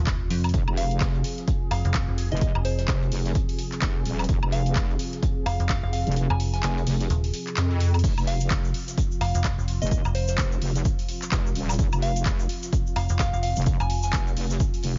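Gritty and bouncy, this bass house excerpt in F minor moves at 128 BPM with a swung 16th-note feel. A metallic FM bass and a heavy, detuned wobble bass sit up front with sidechain pumping, over a punchy, tape-warm electronic kick (which drops out from 6.2 to 8.0 seconds), a house kit of handclaps, woodblock, crash and warm hats, and a very quiet acoustic jazz kit of hi-hat and snare. A resonant, evolving sawtooth pad holds sustained chords underneath, while a soft, warbling synth bell carries the melody through chorus and tape echo, and a grainy tube shaker joins in the background at 8.0 seconds, all in a small room that sounds dark at the top.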